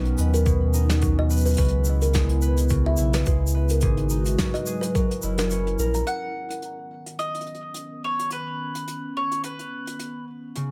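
Lightly reverberant, this pastoral, hopeful folktronica excerpt at 107 BPM in B major swings gently as ringing, fingerpicked concert harp arpeggios with digital delay and a warbling, detuned, lo-fi tape-like pad with chorus carry it throughout, while a soft, woody kalimba with delay plays a second line and a round sine sub bass sits up front beneath a muffled, thumpy, pitched-down electronic kick and a brushed acoustic kit of hi-hat, shaker and snare, until the kick, bass and kalimba have all stopped by 6.1 seconds, when a filter sweep moves over the pad and a mellow, double-strung mandolin with digital delay takes the melody until 10.2 seconds.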